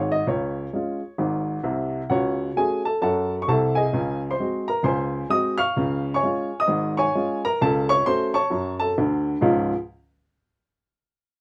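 Exuberant, playful stride piano jazz at 131 BPM in Db major with a swung 4/4 feel, this short cut from a longer piece features a woody, up-front upright piano with short sustain playing solo from 0.0 to 9.7 seconds across a range from Ab1 to F6, moving through Db, Gbm/Db and Ab7/Db chords in a moderate booth ambience.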